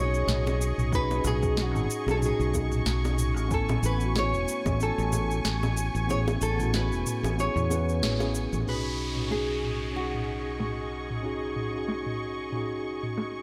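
Sunset chillout at 93 BPM in B mixolydian with a smooth, blissful swing, built on a bright, fingerpicked nylon-string guitar melody with finger squeak that carries digital delay and stops at 10.9 s. A mellow tine electric piano with tape echo and a warm, bowed sul tasto string section with vibrato hold the B69 and Amaj7 chords beneath it, while a growly, up-front fingered electric bass anchors the low end. The groove comes from an overdriven, filtered R&B kit of sharp snare, cabasa and toms, joined by tight, high-tuned bongos set in the background and a soft, overdriven electronic kick that enters at 0.9 s, before a band accent at 8.0 s and an electronic downlifter at 8.7 s usher in the closing phrase under light digital ambience.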